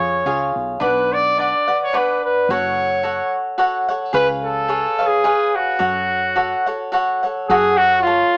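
Passionate and dramatic, this short excerpt of Mexican folk in the mariachi tradition moves in a swung 3/4 at 107 BPM, set in F# harmonic minor. A bright trumpet carries the melody up front in a classical, solo style, its tone distant and roomy. A crisp, picked cavaquinho provides acoustic accompaniment close to the listener, while a woody fretless electric bass anchors the low end with a dark, growly, punchy sound that sits well beneath the other two. The harmony passes through C#, Bm, F#m and C#7 before settling back on F#m around 5.8 seconds. Light reverb and a small-speaker quality give the recording a compact, intimate character, with the bass dropping out at 8.2 seconds just before the trumpet and cavaquinho finish at 8.4.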